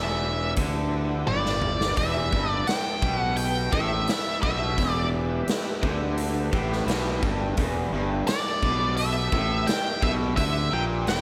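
This brooding, gritty blues rock and southern rock cut opens at once on a thick E minor chord, with a dark, octave-fuzz lead guitar up front carrying the melody between D5 and G5, its distorted tone trailed by slapback echo. Beneath it, a bright, double-tracked garage guitar picks an overdriven riff between E2 and D3, while a growly fingered bass adds fuzz and grit to the bottom end. A full, overdriven tonewheel organ holds sustained chords at a very quiet level, its key click, second-harmonic percussion, chorus vibrato and slow rotary speaker giving the background a gritty shimmer. The big rock kit enters at 0.6 seconds with a punchy kick, a medium-tuned snare, hi-hat and toms sitting up front in a bright stone room, and it plays a fill from 1.3 to 2.0 seconds. At a straight 86 BPM in 4/4, the whole piece stays on E minor, bathed in a lush hall reverb that lends it a big arena sound. The recording is cut from a longer piece.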